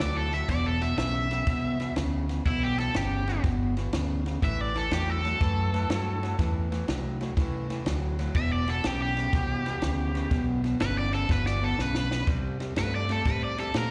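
Brooding and smoky, this electric blues shuffle in E minor swings at 122 BPM, a short cut from a longer piece that sounds like a live gig heard through the venue's PA in a recital hall. A bright, overdriven cranked stack guitar with slapback echo takes the solo across the whole 13.9 seconds, over a slightly broken-up, lo-fi riff guitar from a small old amp and a round, foam-muted vintage bass. A compact cocktail kit with dark cymbals, a high-tuned snare and a tight kick adds a fill from 11.3 to 12.3 seconds as the chords move from Em7 through Am and Em to C5.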